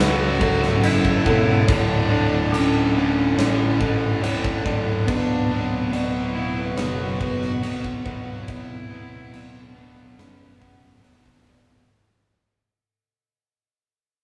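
This hopeful, soaring post-rock passage opens with most of the band at once: an up-front, overdriven electric guitar riff sits low over a growly fuzz bass, while a felt-muted upright piano plays soft, dark arpeggios in the background with its action noise audible. A lone cello carries the melody close and intimate, bowed sul tasto with an airy tone, light vibrato and a gentle attack. Behind it, a very quiet symphonic string section holds floating, pure sustained chords higher up. A huge acoustic drum kit joins at 0.4 seconds with a punchy kick, a medium-tuned snare, bright crash cymbals and a pumping hall sound. At a steady 70 BPM in 4/4, the harmony moves from F#m7 to Dmaj7 and then Bmadd9/D, while a fade-out begins at 1.0 seconds and runs to the end at 11.9 seconds. The playing has the feel of a band in one small room, with moderate reverb adding a short tail.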